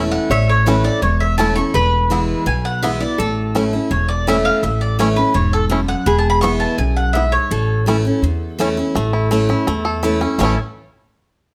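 Bluegrass in A major at a brisk 166 BPM, this lively, virtuosic passage is cut from a longer piece and moves between A and E chords in a straight 4/4. The mellow, round mandolin carries the melody up front with its picked double strings, dropping out at 7.8 seconds and returning only briefly near the close at 10.4 seconds. Alongside it, the fingerpicked banjo shares the melody with a twangy, percussive edge, while the lap resonator guitar adds a metallic, nasal slide countermelody until 8.7 seconds. A bright, full-bodied dreadnought acoustic guitar with fresh strings drives the accompaniment up front, its finger squeaks audible, and a woody, dark upright bass is plucked close and prominent underneath. Moderate studio reverb gives the acoustic ensemble a natural sense of space.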